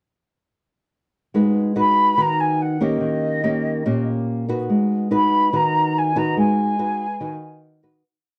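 A straight 144 BPM bossa nova pulse in 4/4 opens at 1.3 seconds with a dark, fingerpicked nylon-string guitar playing thumb bass and syncopated plucked chords through G#m7 and D#7, joined at 1.8 seconds by an airy, expressive concert flute carrying a tongued, vibrato-touched motif melody in sentence phrases, the whole brief, wistful, intimate G# minor piece sitting in moderate studio reverb with a dark, warm production before fading out from 6.4 seconds.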